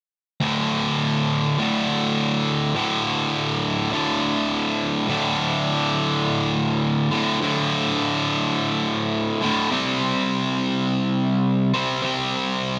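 A sludgy, bright electric guitar plays alone up front from 0.4 s to 12.8 s in this brooding, cinematic rock fragment at 103 BPM in a straight 4/4, its picked, double-tracked, overdriven power chords carrying analog delay and sitting in a huge ambient reverb as the part shifts into a new section at 5.1 s and moves from D5 to C5 at 9.7 s, tuned slightly low to A4 = 438 Hz.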